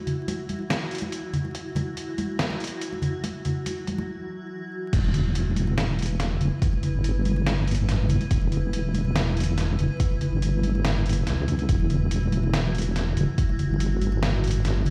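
A cloudy granular pad opens this brooding, meditative deep dubstep excerpt, holding sustained chords that blur and evolve with a bright, full-bodied glow and their own built-in reverb while a filter sweep shapes them through the build-up. A gritty, tape-warm, pitched-down sampler-style drum kit with a medium-tuned snare, hi-hat and crash settles into a half-time feel alongside soft-handed acoustic congas with a thick skin. A deep, layered electronic kick arrives up front at 1.5 seconds, and after a short break at 4.1 seconds the drop lands at 4.9 seconds. There a dark, detuned wobble bass enters up front, sustained and compressed with chorus. The whole piece carries vinyl crackle and the sound of a big system playing into a bare room.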